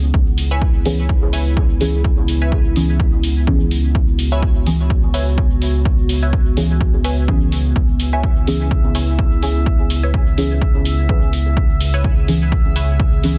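Dub techno at 126 BPM in 4/4 with a light 16th-note swing, this meditative, hypnotic cut from a longer piece rests on a single C#m7 chord in C# minor throughout its 13.4 seconds. A punchy, tape-warm electronic kick sits up front, joined by an analog electronic hi-hat, while a round, dark analog bass holds a deep C#2 with sidechain pumping. Beneath them, a warbly, nostalgic lo-fi pad sustains chords with chorus and built-in reverb, breathing with the sidechain. Two chord stabs carry the dub character: a muted, filter-plucked sawtooth-and-square riff high in the range, colored by phaser, analog chorus and dub echo, and a soft, detuned lower stab with vintage 12-bit sampler grit, phaser, chorus and dub echo. At 8.1 seconds a calm, glassy texture of drifting sine overtones fades in on a single high note, washed in chorus and reverb. The mix is dense and heavily limited, with little room sound beyond the effects on individual parts.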